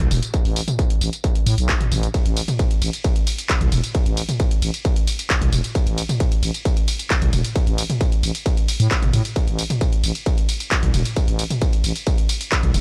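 A distorted electronic kick drum dominates this relentless, industrial peak-time techno fragment, entering at 0.3 seconds and holding the front of the mix until 12.6 seconds. Layered and re-recorded in a large room, it drives a straight 4/4 feel. Beneath it, a growling FM bass built on a sine tone sits thick and sustained between E1 and A2, its fast attack roughened by tube saturation and pulled into a pumping motion by sidechain compression. The techno drum kit fills out the groove with handclaps, warm hi-hats, ride cymbal, tambourine and toms, each pumping from sidechain compression, and it too was re-recorded in a large room and placed up front. The overall sound is dry and gritty, like a hardware recording, and the clip is cut from a longer piece.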